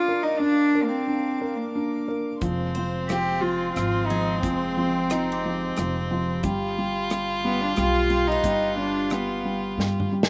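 Acoustic folk-pop ballad in 3/4 at 90 BPM, hopeful and intimate, where a bowed, floating cello sings the melody over a mellow felt-muted upright piano with audible action noise and distant chamber strings from the start, joined at 2.4 seconds by a smooth, vibrato-rich violin line, a woody, growly pizzicato upright bass and a punchy, up-front country drum kit, with a bright, boxy picked swing guitar adding slapback-echoed arpeggios in the background, all moving through Bb, Fm and G7 in a dry outdoor sound before a drum fill at 9.8 seconds.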